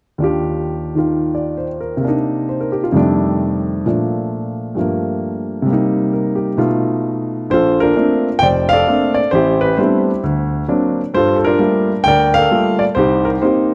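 Close, detailed microphones catch the audible action noise of an intimate, up-front grand piano within a moderate concert hall reverb in this sophisticated, swinging solo jazz excerpt in Bb major at 132 BPM, where the piano alone spans F1 to G5 through rich extended harmonies such as Ebmaj9, B7#11 and D7b13 before the passage changes at 7.5 seconds.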